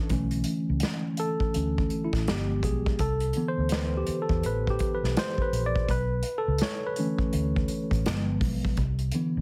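R&B with a neo-soul lean, this sultry, smooth clip from a longer piece moves at 83 BPM in 4/4 with a swung sixteenth-note feel, the worn, slightly out-of-tune tine electric piano sitting up front and taking the lead over a Bm11, G7b9 and Cmaj9 cycle. Beneath it, a vintage muted fingered bass gives a dark, round, foam-muted pulse, while an acoustic drum kit played with bundle sticks adds a punchy kick, medium-tuned snare and hi-hat. Light reverb and heavy multiband compression give the whole a squeezed, radio-like character.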